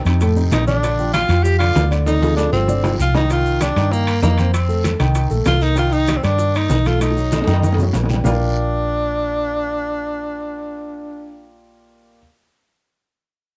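A breathy tenor saxophone opens this sunny, sophisticated Afro-Cuban jazz excerpt at 194 BPM in 4/4 with a straight feel in Bb major. Its clear, up-front solo line is sung with vibrato, soft attacks and scooped notes. Almost at once a dark, mellow baby grand piano joins with long-sustaining accompaniment, while a round, amped hollow-body electric bass sits prominently beneath it. A percussion bed of ringing, compressed metal-shell timbales, low-tuned congas with thick damped skins, softly played bongos, raspy guiro and grainy maracas fills out the rhythm, with the hand drums kept very quiet and the guiro and maracas set in the background. Fills at 2.1 and 7.0 seconds mark phrases over chords moving through F7, Bb6, Cm9 and B7, and the percussion drops out at 8.3 seconds, leaving saxophone, piano and bass beneath light reverb in a dusky production.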